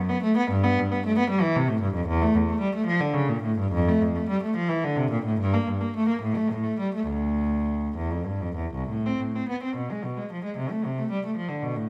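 A lone bowed cello, up front with a rich, reedy gut-string tone in period style and ranging from C2 to C4, plays this introspective, solemn baroque-style suite movement in D minor, moving in a rubato 6/8 at roughly 61-77 dotted-quarter beats per minute, its opening section returning at 8.9 seconds, all within a moderate stone-room reverb that lingers for about 1.4 seconds.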